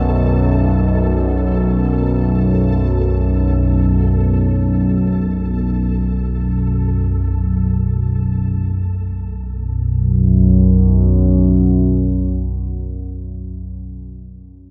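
Bathed in a cavernous cathedral reverb, this vast, ominous ambient fragment in free time, tuned to A4 = 439 Hz, rests on a B5 chord from an up-front, vintage analog drone, warbling and detuned with chorus, that sustains low until 13.7 seconds, while a flickering, grainy granular texture with its own built-in reverb hovers higher and fades out by 8.9 seconds.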